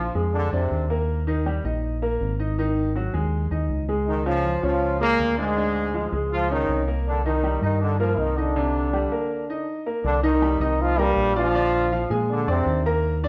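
A brilliant, tight trombone section with vibrato carries the melody in this passionate, driving salsa cut from a longer piece, sounding a brief phrase at the start and then returning at 4.1 seconds to lead until 12.8 seconds. Underneath, a clear baby grand piano plays accompaniment throughout, while a round, punchy fingered electric bass sits dark and up front. The band plays live in one room at 161 BPM in C minor, with a wet, large studio reverb and a break at 8.6 seconds before the section repeats.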